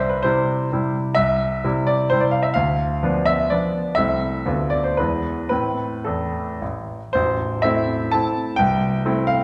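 Dotted rhythms lilt through a triple-time dance, played with free, elastic rubato in a rustic yet graceful romantic classical style. A solo baby grand piano carries it alone, its clear, natural tone sitting up front with short sustain, while a wet recital hall reverb places the listener further back in the room. In this brief fragment cut from a longer piece, a new section begins at 7.1 seconds, and the harmony settles on A minor before the close at 9.4 seconds.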